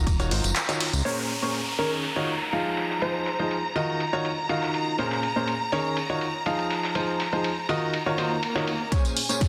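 Energetic yet bittersweet, this piano house excerpt at 122 BPM in Eb dorian rides a clear, up-front grand piano riff with sidechain pumping and digital delay over bright, lush bowed string chords, while a fat, detuned analog bass pumps only through the opening second. A gritty, sampler-style kit of hats, ride and snare sits in the background beside a punchy analog drum machine with handclaps, tambourine and woodblock, and an overdriven electronic kick drops out from 0.6 to 1.1 seconds after a band accent, returning for a drum fill at 8.9 seconds. A round, gentle FM synth lead with chorus and phaser floats behind the mix from 1.1 seconds as electronic risers and a swell lead back into the fill, all wrapped in a lush hall reverb and a dense, heavily limited master.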